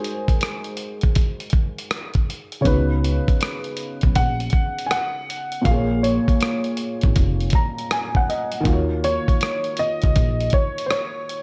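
A gritty, compressed sampler-style drum kit with a thumpy kick, hi-hat and rim click opens this melancholic, hazy lo-fi hip hop excerpt, sitting up front at 80 BPM in Eb minor with a 16th-note swing, alongside two upright pianos. The dark upright piano carries the melody in a worn, slightly detuned voice, its action noise audible, while a felt-muted upright piano supplies soft, short-sustained accompaniment with thick felt and an intimate closeness. The opening 2.7 seconds act as a break before a pizzicato upright bass enters with steel strings and a woody, dark tone, playing until 10.5 seconds. The muted piano takes a brief fill starting at 7.2 seconds as the harmony moves from Ab7 through Db9sus4 and Bbm7 to Ebm7. The drums carry the ambience of a large room, while the overall mix stays dry and close.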